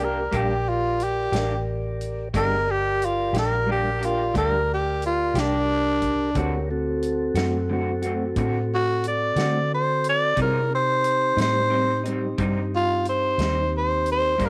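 A growling tenor saxophone carries the melody up front in this brooding, mournful slow blues, its raspy, breathy tone shaped by soft attacks and scooped notes in a jazz-style solo voice. Beneath it, an electric guitar through a small old amp plays twangy, slightly broken-up accompaniment coloured by harmonic tremolo, while a mellow tonewheel organ holds flute-like sustained chords with audible key click and a slow rotary speaker. A vintage, foam-muted fingered electric bass sits dark and round near the front, and a natural acoustic drum kit of hi-hat, punchy kick and medium-tuned snare joins at 0.3 s. The 12/8 groove feels straight, moving from Gm to D7 at 6.4 s and on to Cm at 10.4 s. Light reverb and small room ambience frame this short excerpt, which is cut from a longer piece.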